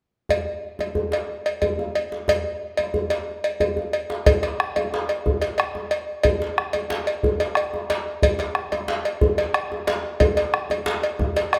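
A metallic cowbell and a tight, cracking djembe open this festive, earthy West African traditional drum ensemble excerpt in a straight 12/8 at 121 BPM, the djembe sounding distant in a large room while the cowbell sits up front in a small one. At 4.3 s a round bombo joins, close and dry, and all three play on together through 11.6 s. A recital hall reverb gives the recording a lingering ambience.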